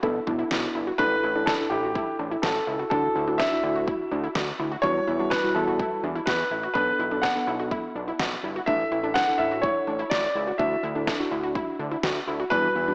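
A cool, melancholic synth-pop passage at 125 BPM in 4/4 opens at once with muted, felt-like synth keys treated with chorus, a lush unison pluck spinning arpeggios through an analog delay, a fat analog bass with a filter sweep, and a punchy electronic pop drum kit built on kick and a deep snare. At 1.0 seconds a clear, polished baby grand piano takes the melody up front, sitting louder than the soft, dark keys and the thick, sustained bass beneath it. The harmony moves through Bm7, Asus4, Dadd9 and Emadd9 before circling back, giving the piece a wistful, unresolved pull. The drums drop out at 12.6 seconds while the other parts carry on to the end of this cut from a longer piece. The whole mix is bathed in a wet hall reverb and colored by worn, warbling cassette tape with pitch drift and a small-speaker sound, lending it a hazy, nostalgic character.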